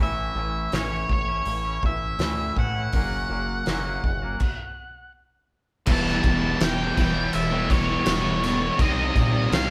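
Recorded live by a band in one stone room with moderate reverb, this brooding, angsty quiet-loud alternative rock excerpt sets an up-front, dark octave-fuzz lead guitar melody over a gritty, saturated sawtooth synth bass and clean, twangy electric guitar arpeggios, with a loose indie drum kit of punchy kick and fat snare joining at 0.7 s, the twangy guitar dropping out at 4.4 s, and at 5.9 s a bright, double-tracked high-gain guitar riff and two thick fuzz guitar riffs entering in the background.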